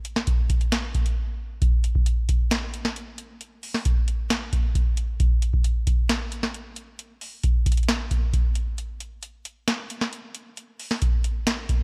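A booming analog drum machine carries this brooding, dark hip hop excerpt alone, its deep kick, crisp snare, metallic hats and finger snaps sitting dry and up front in a half-time feel. The groove drops out in brief breaks at 1.2 seconds and again at 8.8 seconds, and after the opening moments it settles into a longer second section that runs to the end.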